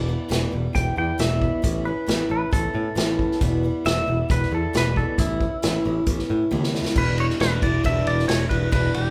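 A clean, twangy lap steel guitar carries the melody in a slide solo through the first 7.0 seconds, its compressed, fingered tone shaped by volume swells. This is a dusty, reflective piece of folk rock and heartland rock in E dorian, moving at 136 BPM in a straight 4/4 and tuned slightly flat to A4 = 438 Hz. Beneath it, a boxy parlour acoustic guitar with fresh strings picks out the accompaniment over a growly, punchy electric bass, as the chords alternate between Em and Aadd9 before settling on Em7. A distant, roomy drum kit played with bundle sticks comes in at 0.3 seconds, with dark cymbals, a medium-tuned snare and a tight kick, and a drum fill leads into a new section at 7.0 seconds. The band sounds as if it is playing live together in a large studio, with moderate reverb lending the whole a natural sense of space in this short cut from a longer piece.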